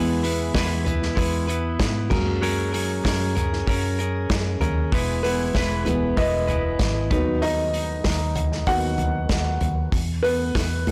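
A straight, steady 4/4 pulse drives this anthemic, hopeful piano-led pop excerpt, with an acoustic drum kit played with bundle sticks entering at 0.2 seconds, its tight kick softly clipped and a medium-tuned snare sitting up front alongside hi-hat, toms and crash. A dark, woody upright piano with short sustain carries the lead throughout over a round, foam-muted vintage bass, while a clean, picked electric guitar, recorded direct and compressed, plays an up-front riff until 7.4 seconds. The chords move from E through F#add9 and B/D# before landing on a bare E5, all set in a moderate large-studio reverb on a blown-out, overdriven recording.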